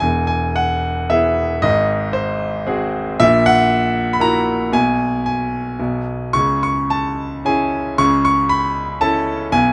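A bright concert grand piano plays alone, up front and brilliant with a deep bass reaching down to E1, in a relaxed, lyrical classical piece in 3/4 with a flexible rubato feel, moving from E through G#7, F#7/A# and C#m to A/C# under light reverb and close, detailed microphones in this short cut from a longer work.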